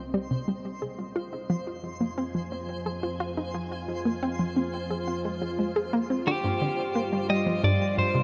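Ambient, sequencer-driven space music with a hypnotic, expansive mood, where a bright, up-front analog pluck riff with tape echo repeats over lush string-machine chords and a warbling analog drone bass that both fade in alongside a sparkling granular texture, all set in a huge ambient reverb, until a slightly broken-up lead guitar melody with tape echo enters at 6.3 seconds in this fragment cut from a longer piece.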